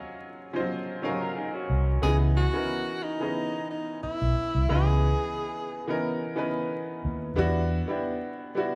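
A lightly swung sixteenth-note groove in 4/4 sets a late-night, introspective R&B mood in this short fragment cut from a longer piece. A bright upright piano carries the accompaniment throughout, its woody, brilliant tone sitting up front with short sustain over lush minor-ninth chords. A slightly broken-up electric guitar through a small old amp adds a brief compressed, lo-fi second line from 1.0 to 2.0 s, giving way at 2.0 s to a breathy tenor saxophone that takes the melody, its subtone, vibrato and scooped notes lending a close, jazz-style intimacy. Beneath them, a vintage foam-muted fingered electric bass enters at 1.7 s with a dark, round, amped presence and holds the low end until 7.8 s. The band sounds as if playing live together in one room, framed by a moderate large studio reverb and a layer of vinyl crackle.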